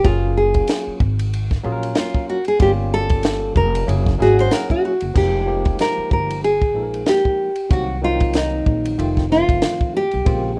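A swung sixteenth-note groove from a compact cocktail drum kit, dry with dark cymbals, a high-tuned snare and a punchy kick, drives this nocturnal, smoky jazz-hop fragment, where a fingerpicked nylon-string guitar, up front with audible finger squeak, carries the melody as a solo until 5.2 seconds, a woody pizzicato upright bass anchors the low end, and a bright, barky tine electric piano through a combo amp adds fast tremolo beneath, captured in a rough home demo mix with faint mains hum.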